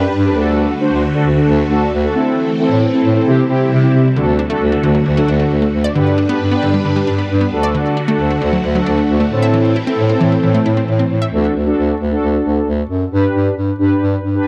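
Synth-pop at 134 BPM in D mixolydian, bright and upbeat, where a mellow, up-front bass clarinet carries the bass line under brassy, round synth brass with chorus and vibrato, while a swirling, vintage string machine holds phased chords until 11.3 seconds, and a punchy, lush unison pluck adds delayed arpeggios from 4.2 to 11.3 seconds, all set in a dark production with moderate plate reverb in this excerpt cut from a longer piece.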